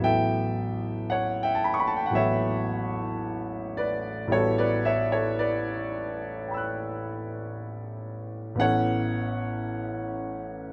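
The rhythm moves freely in rubato around a slow 56 BPM in 4/4, giving this brief passage from a longer impressionist solo piano piece a hazy, nocturnal drift. A concert grand piano plays alone from start to finish, covering a span from A1 up to F#6, with a deep bass anchoring the lower end and a clear, open tone above. Its long sustain lets the harmony hang in the air, beginning on an A13 chord and shifting to A69 at 8.6 seconds. Close, detailed microphones place the instrument up front, while a light reverb adds a gentle sense of space around it. The whole fragment lasts 10.7 seconds and stays within a single section.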